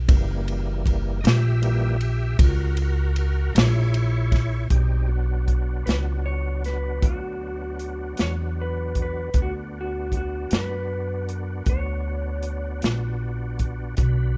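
This slow blues excerpt moves in a straight 12/8 at 52 BPM in B harmonic minor, with a mournful, soulful mood. An overdriven tonewheel organ carries sustained chords through a slow rotary speaker and chorus vibrato. Its thick, gritty tone and audible key click take the spotlight as a solo over an F#7b9 chord in the opening passage, before the harmony settles on Bm at 4.7 seconds. Underneath, a woody, pizzicato upright bass with steel strings sits up front beside a natural country drum kit, whose airy, polished sound pairs a punchy kick and medium-tuned snare with hi-hat and ride cymbal. At 5.9 seconds an electric guitar through a small old amp enters with a picked melody, its slightly broken-up, compressed, lo-fi tone adding a warm edge until it drops out at 12.8 seconds. The whole thing has the rough, roomy feel of a home demo mix.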